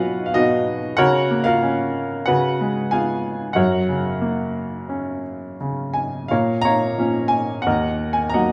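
A clear, natural baby grand piano sits up front in a moderate stage reverb on this relaxed, lyrical classical solo excerpt in F# major, played with rubato at around 82-94 BPM, its short-sustained notes ranging from D#2 to B5 as the harmony moves from B through F#/C#, C#7 and F# before turning toward A#m at 6.3 s and D#m at 7.7 s.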